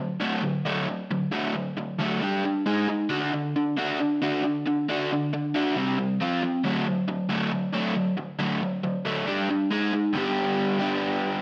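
Raw and rowdy, this short rock fragment is cut from a longer piece and moves at 136 BPM in a straight 4/4, centred on D mixolydian. A single crunchy overdriven electric guitar carries everything alone from 0.0 to 11.4 seconds, picked and double-tracked so it sits up front with a thick, gritty edge. It ranges from G2 up to G#4, circling a home chord of D while power chords on G, G#, C and F push against it before each return. At 10.2 seconds the figure shifts into a new section and lands on a G chord for the closing moments. A stone-room reverb with a 1.1-second decay surrounds the guitar in a wet, echoing digital ambience.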